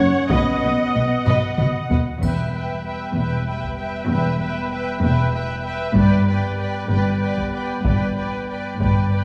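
Wet scoring-stage reverb and a small room ambience give this fragment of a longer epic orchestral film score a big, dramatic presence. Set in E minor at 64 BPM in a straight 6/8, it moves from a B chord to Em at 2.2 seconds and G at 6.0 seconds, with a dramatic, relentless mood. A lush violin section carries the smooth, vibrato-laden melody while a second violin section adds a rich counterline, and bowed violas fill in the accompaniment. Dark, distant French horns hold sustained chords, and woody double basses join expressive, close cellos on the bass. Taiko drums struck with hard sticks enter at 0.3 seconds and play a fill just before the second section, while a faint, dry triangle glints in the background for about a second.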